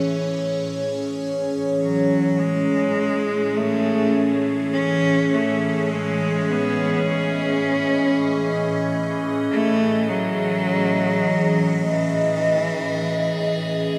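An evolving wavetable pad opens this ambient fragment in free time, its bright, morphing sine tone holding sustained chords over an E/A harmony, colored by a phaser and its own built-in reverb. Beneath it, a rich studio cello section bowing a low A fades in gradually, smooth and even with gentle vibrato, sitting well in the background. At 1.8 seconds a single clear cello enters up front with a focused, bowed melody in its middle register, its vibrato trailed by an analog delay until it stops at 13.7 seconds. A huge ambient reverb soaks the whole dreamy mix, giving the warm, weightless mood a sense of endless space. Cut from a longer piece, the passage feels suspended and unhurried.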